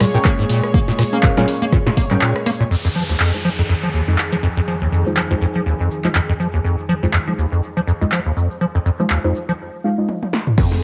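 Cut from a longer piece and captured as a cassette home recording with light reverb and digital ambience, this gritty, driving acid house groove swings its 16ths over a punchy, tape-worn analog drum machine of snare, handclaps, hi-hat, rim click, cabasa, congas, toms and crash, with a punchy electronic kick up front that drops out at 2.2 s and only returns for a moment near the close. A squelchy, hollow, resonant square-wave acid bass riff with tube saturation, chorus and tape echo sits up front, while a lush, airy, detuned sawtooth unison pad holds sustained chords under sidechain pumping and a deep, mellow, ring-modulated chord stab adds dark, decaying hits. From 2.7 s the harmony moves from Bbm7 to Fm7 as filter sweeps run through the pad and stab, an electronic downlifter falls in the background, and a drum fill arrives at 10.1 s.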